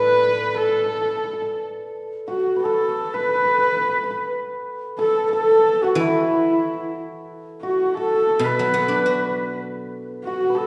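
Chinese traditional chamber music, graceful and festive, moves in a free rubato feel in this short cut from a longer piece. An airy, mellow bamboo xiao carries the melody up front with vibrato, while a shimmering hammered dulcimer and a husky horsehead fiddle with portamento play second lines throughout, and a rich bowed erhu adds its own line only until 1.6 s. A bright, silvery guzheng accompanies at the start and again from 6.0 s, and the ensemble sits in a wet scoring-stage reverb, heard from further back in the room.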